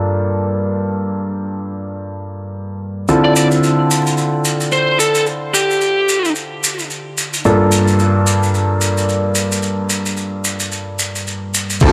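Clear, up-front concert grand piano stabs with audible action noise, sidechain pumping, a low-pass filter and analog delay drive this funky, swaggering glitch hop excerpt at 110 BPM with swung 16ths over Gm7 and Dm7, joined at 3.1 seconds by grainy, distant maracas and, a moment later, briefly by a biting, overdriven electric lead guitar with delay, before a swirling, thick detuned saw bass, a thumpy kick drum, a pitched-down, tape-warm crash cymbal and a barely audible electronic impact arrive together at 11.8 seconds in a dry, gritty hardware recording with light reverb.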